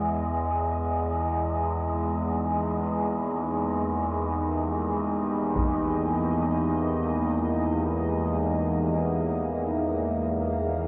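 Dark ambient drone in free time, unsettling and ominous, cut from a longer piece. It opens over a D#/E chord on a detuned sawtooth drone with resonant, moving overtones, up front beside a breathy, wind-like tuned noise layer that sits in the background and fades out. A deep, moody pad with a sub octave enters at 2.4 s, and a lone hit from a vintage, band-limited taiko ensemble played with hard sticks lands at 5.6 s, all swallowed by a huge, wet reverb and the warbling pitch drift of worn cassette tape.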